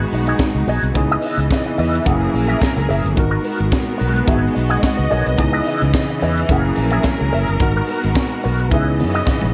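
Glamorous and driving, this disco groove moves at 108 BPM in a straight 4/4, cut from a longer piece and set in C# dorian. A growly, amped fretless bass with ensemble chorus sits up front alongside a tight funk drum kit with a high-tuned snare, tight kick, hi-hat and toms, the drums entering at 0.1 seconds. Clean, picked electric guitar runs through an envelope filter with wah, sounding compressed and scooped, while a worn, slightly out-of-tune tine electric piano with light overdrive plays through its built-in speakers and adds a fill at 4.6 seconds. A lush, distant string section holds bowed chords with vibrato, and a jingly, bright tambourine sits quietly in the background. The harmony cycles through Emaj9, C#m9, F#9 and G#m9 inside a small room ambience, closing on C#m9 with a drum fill at 9.3 seconds.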